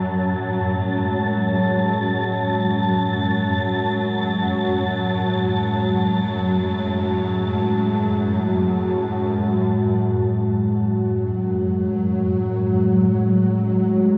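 A dark, desolate ambient drone fragment in F# minor and free time opens on a bright, sawtooth-edged pad holding an F#madd9 chord through chorus, shimmer reverb and a filter swell, over a swarming, detuned, granular drone and a breathy, wind-like tuned noise layer that ends at 9.6 seconds, all sitting in a vast cathedral reverb with a 5.6-second decay.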